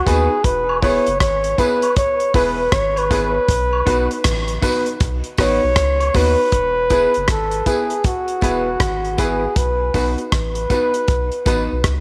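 A breathy, dark flugelhorn opens this sunny roots reggae excerpt at 79 BPM in E major, carrying a whispered, intimate solo up front over the first 6.5 seconds with a soft attack and tape echo trailing its phrases. Almost at once the band settles in: a damped 70s drum kit with a tight kick, hi-hat and rim click sits dry and close, while a soft, round dub sub bass hums deep underneath with a fast attack and long sustain. A woody, slightly detuned upright piano plays stabs, and a mellow, clean electric guitar, fingered and touched with tape echo, stays in the background. Tambourine and woodblock, along with a tube shaker and group handclap, sound distant, as if from a large room. The harmony rocks gently between E and B under a swung sixteenth-note feel, and an echo chamber reverb with a 2.6-second tail lends the whole groove an easy, sunlit glow.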